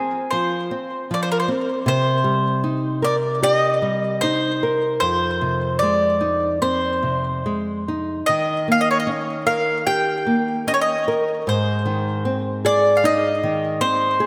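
A picked mandolin with woody double strings carries the melody from the first moment, touched with delay, over a small, fingerpicked nylon-string guitar, both sitting up front in this nostalgic, tender fado-style ballad. The pair move freely in rubato around 76 BPM in 4/4, passing through F5, Cm7, Fm7 and Eb7 before settling on Ab at 11.5 seconds. A lush hall reverb soaks the whole mix in a dreamy haze, and the fragment is cut from a longer piece at 14.3 seconds.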